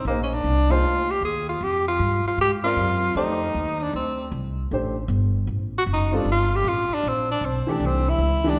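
Small-group swing and bop jazz at 155 BPM, sophisticated and swinging, this short cut features an up-front tenor saxophone carrying the melody with vibrato, scooped notes and a smooth top, over an equally forward, woody pizzicato upright bass on steel strings and a warm, natural grand piano accompanying through chords such as Bb7, F7 and F#dim7, heard in the moderate reverb of a church or concert hall.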